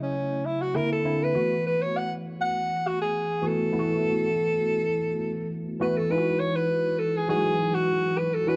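Glossy and breezy, this short pop excerpt at 101 BPM in E major, with a gentle sixteenth-note swing, pairs a breathy, punchy alto saxophone melody with light vibrato and a roomy, distant sheen against a worn, slightly out-of-tune tine electric piano whose barky, lightly overdriven tone is thickened by ensemble chorus, all set in light studio reverb as the chords move from F#m7 through C9 and B7sus4 before settling on Emaj9 at 6.1 seconds.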